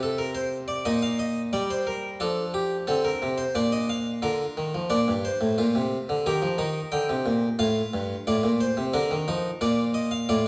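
A solo harpsichord opens at once, close-miked and up front, its plucked, bright tone full-bodied on a single set of strings in the French style. This is a short cut from a longer baroque-style fugue in three parts, lively and elegant in character, moving in a straight, steady four. The instrument spans from G2 up to G5, and its dry, immediate sound sits inside a recital hall whose reverberant bloom trails each note. The harmony circles through familiar cadential chords, settling on Bb at 3.5 seconds before a new passage begins at 4.9 seconds. From there the writing continues through Eb and F toward a close on Bb over D at 8.9 seconds, with the harpsichord playing through to 10.5 seconds.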